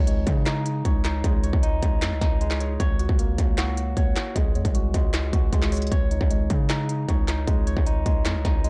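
Trap-style hip hop at 154 BPM with a half-time feel, this short cut from a longer piece feels triumphant yet dreamy as it moves through Dbsus2, Gb/Db and Ab7 before returning to Dbsus2. A bright, barky tine electric piano plays arpeggios colored by light overdrive, phaser and delay, over a heavy, saturated 808-style bass with a fast attack, a sine body and a noise layer. From 0.1 seconds an up-front industrial drum kit of handclaps, hi-hat, kick and snare adds a distorted kick, a clanging snare, smooth hats and gritty 12-bit sampler texture, all within a dark, warm, nearly dry production.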